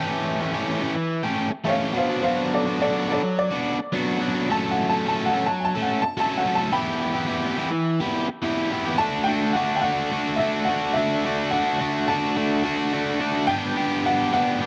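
Carefree yet wistful, this rock excerpt moves at 106 BPM in a straight 4/4 feel, centred on D major and tuned slightly flat, with A4 at 437 Hz. A crunchy, bright, overdriven electric guitar drives the riff from the start, picked and double-tracked and sitting up front in the mix. At 1.6 seconds a warm, woody upright piano enters with the melody, its slightly detuned, vintage tone and short sustain giving the tune a smooth, wistful edge, and it takes a solo through to 9.0 seconds. The harmony moves from A7 through Bm7, F#m and Em before settling on D at 9.0 seconds, where a new section begins and later reaches Gmaj7. Light reverb and a small-room ambience frame a dark, warm production.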